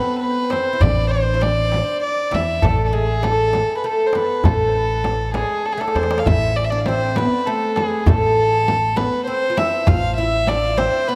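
A pure, floating violin played sul tasto with a soft attack and a touch of analog delay sings up front over a woody, plectrum-plucked fretless oud, a growly pizzicato upright bass entering at 0.8 s, a deep clay-shell darbuka set in the background and a softly hand-played frame drum, giving this longing, soulful Arabic maqam ensemble fragment in 6/8 a dreamy, reverb-soaked glow, with a drum fill at 5.7 s leading into its second section.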